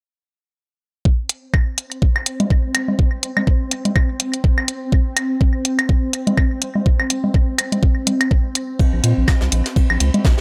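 Quirky and cool, this minimal techno excerpt at 124 BPM rides a swung 16th feel, setting a knocking, tape-tinged electronic kick and up-front layered hi-hats against overdriven woodblock and congas with tape echo and a swarming, detuned, granular drone that pumps with the sidechain from 1.9 seconds, before a soft brush kit of ride and fat snare and a round, deep analog bass of square and sine tones enter at 8.8 and 8.9 seconds, the whole set in a moderate plate reverb.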